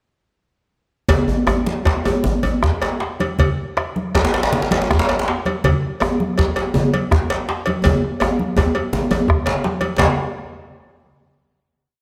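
A wet recital-hall reverb surrounds this short, powerful and driving West African drum ensemble piece in 12/8, which speeds up from about 104 to 118 BPM. An up-front, deep djembe with metal rattles, struck with hard hands and heard at a distance, plays the lead phrases over a tight, cracking, vintage-toned second djembe, thick-skinned, medium-tuned congas, a round, dry bombo set in the background, and a metallic, saturated cowbell carrying the bell pattern. All five parts enter together at 1.1 seconds, pass through a drum fill from 7.9 seconds, and close on a final hit at 10.0 seconds.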